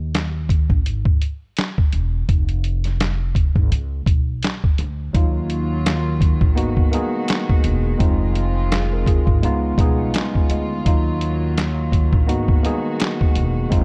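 A dark, warm small-room sound frames this tough, gritty boom-bap hip-hop passage at 84 BPM in Eb minor, cut from a longer piece, where a woody pizzicato upright bass and a compressed, pitched-down sampler-style kit with a thumpy kick, medium-tuned snare, hi-hat and handclaps open with a break. At 5.1 seconds a worn, slightly out-of-tune tine electric piano with cassette-tape colour enters up front alongside a reedy, bowed string section with a gut-string tone and smooth top, holding sustained chords such as Ebmadd9, Abm7, Fm7 and Db7. Very quiet finger snaps arrive at 5.9 seconds, adding a human touch beneath the swung groove.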